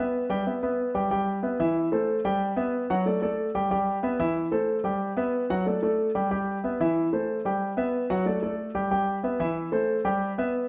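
Latin piano piece in E minor at a brisk 185 BPM, cut from a longer work, with a passionate, driving mood as a lone dark concert grand plays from E3 to G5 over cycling Em, Am and D5 chords. The piano sits up front with a mellow tone and deep bass, bathed in a large studio reverb that rings for about a second. The sound is soft-edged and live, as if captured in a single room, and the passage runs about 10.6 seconds.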